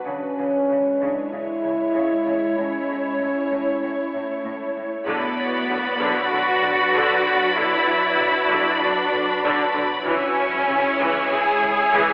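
A dark, woody cello section carries the bass up front through this vast, brooding cinematic excerpt at 96 BPM in B dorian, beneath an ethereal, airy pad and mellow French horn chords that hold until 4.8 seconds; then at 5.1 seconds lush violins take a focused second line, smooth violas fill in the accompaniment, and a background double bass section joins a very quiet, punchy sine sub bass, with the whole recording set in a wet scoring-stage reverb, heard from further back with a telephone-like tone.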